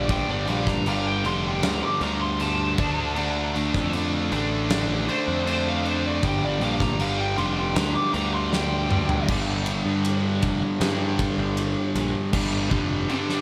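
A big arena sound wrapped in lush hall reverb frames this dark, cathartic cut from a longer quiet-loud alternative rock piece in G minor, moving at a straight 78 BPM in 4/4 over Gm7, Dm and G5. A lead guitar through a small cranked amp takes a warm, overdriven solo until 9.3 seconds, playing above two picked riffing guitars: an up-front overdriven one and a bright distorted one set in the background that drops out at 12.3 seconds. Beneath them a growly fuzz bass sits up front, while a big acoustic kit with a fat snare, punchy kick and rolled-off top works crash, ride and toms and lands a drum fill at 8.5 seconds.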